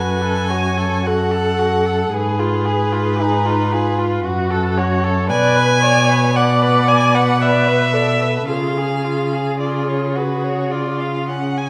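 Elegiac and solemn, this slow romantic movement for string quartet moves in 3/4 at 56 BPM with a rubato feel, in F# minor, and is cut from a longer piece. All four players are muted and bowed con sordino: a first violin carries the melody between Cb5 and G#5, a second violin sings a supporting line, a viola fills in the accompaniment with portamento, and a cello holds the bass. The upper three voices sound veiled and distant, each shaded with vibrato, while the cello sits up front with only light vibrato and a dark tone. The harmony passes from F#m through Fdim/Ab and back, settles on Bm at 5.3 seconds, and arrives on C# at 8.5 seconds. A wet recital hall reverb lends the ensemble a lingering space around its shadowed colour.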